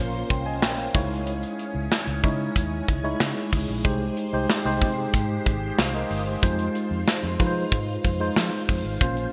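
1980s-style pop with a glossy, uplifting mood, this short clip is cut from a longer piece and moves at a steady, straight four-beat pulse. A worn, slightly out-of-tune tine electric piano sits up front with clean accompaniment, while a phased string machine holds swirling sawtooth chords behind it, its slow attack and long release softened by ensemble chorus and a warbling phaser. Underneath, a foam-muted fingered electric bass gives a dark, round, amped low end. The drums arrive at 0.3 seconds: an acoustic kit with hi-hat, tight kick, medium-tuned snare and tambourine, polished and airy, and treated with gated reverb. The harmony moves through Bbmadd9, Dbmadd9, Abmaj7/C and Fm7, all set in a lush hall reverb with a bright digital 1980s sheen.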